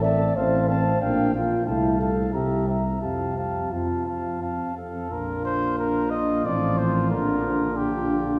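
Stately and triumphant, this classical brass quintet passage moves at 90 BPM in 3/4, opening in F major before shifting to Bb major at 5.1 s. A mellow trumpet carries the melody with light vibrato over a warm flugelhorn second line, while a smooth-topped French horn and a background euphonium fill out the accompaniment, and a dark, punchy tuba anchors the bass up front. The group is heard from further back in a church with a long, wet reverb, and the passage is cut from a longer piece, ending at 8.4 s.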